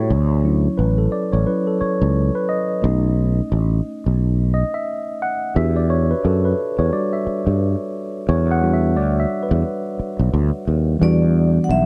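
A dry, close, 1970s-style studio sound frames this introspective, sultry neo-soul R&B fragment at 88 BPM in E dorian, with a 16th-note swing feel. A mellow, clean tine electric piano heard through its built-in speakers carries the chords from Dmaj7 through B7 to Em7 as its solo feature, while a growly, bright fretless electric bass sustains low and up front. At 11.0 seconds a metallic, ringing vibraphone with medium motor vibrato enters with a brief high melody just before the cut.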